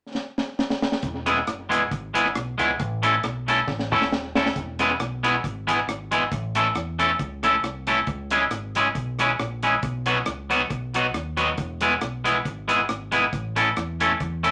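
An up-front, twangy electric guitar at the edge of break-up supplies the accompaniment in this cheerful, upbeat ska excerpt. It enters at 1.3 seconds, picked and slightly broken-up through an analog delay, over a progression of E, A, C#m and B. Beneath it, a dry, dark reggae drum kit with a high-tuned snare, tight kick, hi-hat and rim click opens with a fill and plays another at 3.7 seconds, its rolled-off top also touched by analog delay, while a round, deep dub fingered bass joins at 1.0 second, all set in a wet studio ambience with a lightly swung feel.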